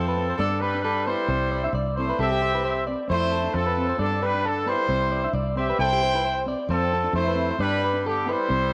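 Danceable and sunny, this highlife excerpt moves at 134 BPM in C major with a light sixteenth-note swing, as a bright, punchy horn section carries the melody up front over a raspy, gritty tenor saxophone second line, a slightly broken-up picked guitar playing arpeggios through spring reverb and slapback echo, a round, foam-muted fingered bass, and a dark, clean fingered guitar tucked in the background from 0.2 seconds, all set in a moderate echo chamber over a cycle of Gadd9, C and Fmaj7.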